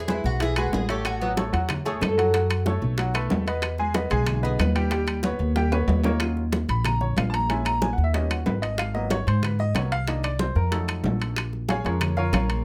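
This fiery, sophisticated Afro-Cuban jazz fragment opens with a bright, double-stringed oud plucked with a plectrum over a clear, short-sustaining baby grand piano and a dark, thumpy gut-string upright bass up front, joined by close, dry, ringing metal-shell timbales and, further back, tight high-tuned bongos, thin-skinned vintage congas and woody claves, until a drum fill at 5.6 seconds hands the spotlight to a piano solo from 6.2 seconds over extended jazz harmony.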